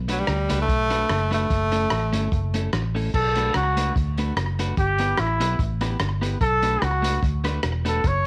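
Ska with a driving, energetic swing, this brief excerpt from a longer piece rides on a round, foam-muted electric bass up front and a vintage drum kit of muffled, dark cymbals, tight kick, hi-hat and rim click, its sound lo-fi and rolled-off with a slapback echo. A clean, compressed electric guitar picks the accompaniment under a clear, punchy tenor saxophone whose vibrato carries the melody until 2.7 seconds. From 3.1 seconds a distant, roomy trumpet takes a solo over a shift from Bm7 to G6, all set in a small room with light reverb.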